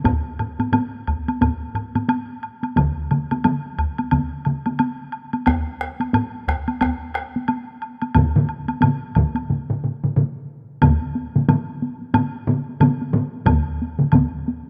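Heavy-stick solo taiko drums and a vintage, band-limited taiko ensemble open this powerful, ceremonial Japanese traditional excerpt, joined by a hard-stick solo taiko in a small room and a close, dry, woody woodblock, before a compressed, saturated second taiko ensemble lands up front at 2.8 seconds, all driving a swung 4/4 groove that keeps speeding up through a break from 9.5 to 10.8 seconds into a new closing passage, wrapped in a lush hall reverb and a rough home-demo mix.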